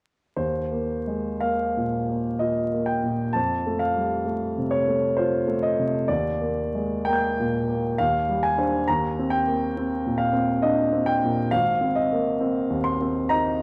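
Dreamy and serene, this short fragment of impressionist classical solo piano drifts in 3/4 at a slow 54-68 BPM, its rubato feel letting the pulse breathe freely in E-flat major. A single baby grand carries the whole fragment from 0.4 to 13.6 seconds, ranging from deep Ab1 in the bass to a high G6. Its tone is warm and natural, with a long sustain that lets each chord linger, and it sits up front in the mix. The harmony glides through colourful extended chords, moving from Ebsus2 and Fadd9 to Ebmaj7, then Abmaj7#11 and Cm9 over an E-flat bass, before settling on Abadd9. Close, detailed microphones capture the instrument intimately, while a moderate recital hall reverb adds gentle space and a touch of vinyl crackle lends a nostalgic patina.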